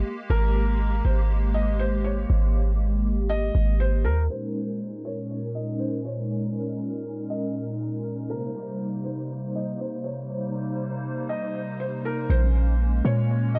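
An echo-heavy, low-passed mix sits in a small room, giving this short cut from a longer piece a floating, dreamy haze. It is atmospheric cloud-rap at 120 BPM in 4/4 with a half-time feel, moving through Abmaj9, Bbm11, Cm7 and Bbm9. A hollow, flute-like pad with a vintage warble and ensemble chorus holds sustained chords up front from start to finish, its soft attack and long release blurring each change. A deep, boomy 808-style bass with a fast attack and decaying tail anchors the opening, drops out at 4.3 seconds while a filter sweep runs through the middle stretch, and returns at 12.3 seconds. Above it all, a felt-muted upright piano carries a quiet, intimate melody from 0.3 seconds, its thin, muted tone softened further by a low-pass filter and trailing analog delay.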